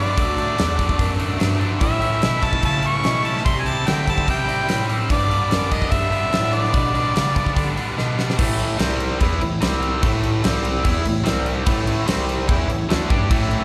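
A clear, close-miked harmonica leads this swaggering, raunchy blues rock and southern rock excerpt at 146 BPM, its jazz-style melody shaped by scooped notes, vibrato, overdrive and slapback echo until 7.8 s over a D, A, C, G progression. A biting, double-tracked electric guitar riff and a huge arena drum kit with a fat snare, punchy kick and bright cymbals sit up front, while a breathy bass clarinet carries the low line with vibrato. After a drum fill at 8.0 s the chords shift to alternating A5 and C5, and a very quiet, gritty tonewheel organ with key click and percussion slips in at 11.4 s, all heard as a live gig through the venue's PA with recital hall reverb.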